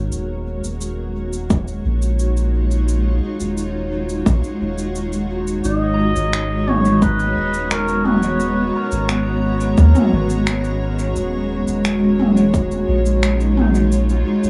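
Ambient dub with a hazy, meditative air, cut from a longer piece, built on a cloudy, evolving granular pad that fades in up front over a round, tube-saturated sub bass and tape-warm electronic percussion of cabasa, finger snaps and toms soaked in dub echo. An overdriven, deep electronic kick enters at 1.5 seconds, while a soft, warbling FM bell drifts in the background with arpeggios through chorus, dub echo and a sweeping low-pass filter. At 5.6 seconds a veiled, distant cup-muted trumpet plays a mellow solo melody trailed by dub echo over minor eleventh chords, all in a light small-room ambience.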